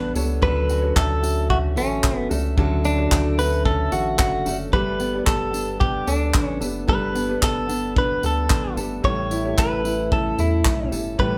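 A straight, steady 4/4 pulse carries this carefree, heartfelt acoustic pop piece, driven by an up-front studio drum kit with a punchy kick, handclaps and tambourine that runs from 0.2 to 11.3 seconds. Out front, a clean, compressed electric guitar recorded direct carries the melody with a picked tone and a touch of spring reverb. Beneath it, a full-bodied jumbo steel-string acoustic guitar is fingerpicked as accompaniment, while a flamenco guitar with old strings adds woody, dark arpeggios in the background. A round analog bass with a wave-folded edge and fast attack anchors the low end, and a felt-muted upright piano sits very quietly in the mix, soft and intimate, its action noise audible. The harmony moves from Dmaj7 to Gadd9 to A7, and the whole band sounds as if playing live together in one room with moderate studio reverb, in this short cut from a longer piece.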